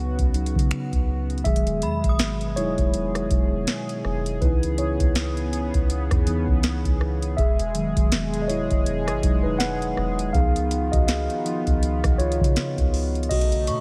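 A digital ambience surrounds this moody, longing contemporary R&B excerpt, cut from a longer piece, with a dry, booming analog drum machine sitting up front. A mellow, clean tine electric piano carries the lead from the opening, moving through chords such as C#7sus4, Emaj7, C#m7 and C#9 over a swung 4/4 groove. The drums come in at 0.2 seconds with a deep kick, crisp snare, metallic hi-hats, finger snaps, rim clicks and a crash cymbal, while a soft, round 808-style bass supplies dark, decaying low notes. Beneath them, a shimmering, retro pulse-width pad holds detuned, chorused chords that pump with sidechain compression. Between 1.8 and 3.3 seconds, a faint, inharmonic FM synth chime rings out with ensemble chorus, tremolo and tape echo, returning briefly at the very end.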